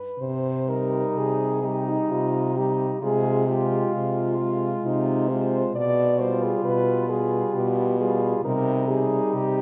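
In a slow 3/4 at 65 BPM, the beats stretch and give with a rubato feel, lending this classical horn quartet a lyrical, elegiac sway in C minor. A mellow French horn carries the melody from the very start, moving between Eb4 and D5 with a light vibrato. At 0.2 seconds a second horn enters on the bass, sitting close-miked and up front around B2 to C3 with a soft attack. At 0.7 seconds two more horns join: a clear, vintage-toned second line moving between Eb4 and F4, and a distant, roomy accompaniment part with gentle vibrato around G3 to Ab3, both set a little lower in level. The harmony moves from C minor through F minor over C and G7 over B before settling back on C minor, all wrapped in a moderate church reverb with a long 3.4-second decay. The melancholic passage is cut from a longer piece.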